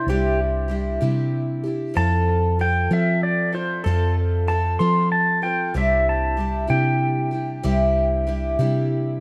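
A twangy, compressed pedal steel guitar with tape echo carries the nostalgic, hopeful melody in volume swells and slides until 8.6 seconds, over a shimmering, octave-doubled picked twelve-string acoustic guitar with audible finger squeak and a dark, round hollow-body short-scale bass, all in a straight 6/8 folk rock and heartland rock passage that moves from Cadd9 to F and back, heard in a rough home demo mix with light reverb and cut from a longer piece.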